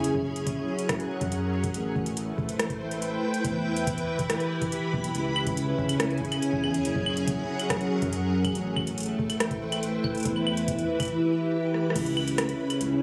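A straight 4/4 pulse at 141 BPM drives this melancholic, eerie IDM excerpt, with an overdriven analog drum machine placing metallic hi-hats, claves, rim clicks and crash cymbal up front, its delay trailing behind, while a deep, distorted electronic kick sits beneath and a drum fill arrives at 11.7 seconds. A round, dark analog bass blending sawtooth and sine tones with ring modulation holds the low end. A silky, vintage string machine with slow attack and long release spreads sustained chords through an ensemble chorus, cycling F#add9, Am7, Em and C#m inside a phone-captured club ambience.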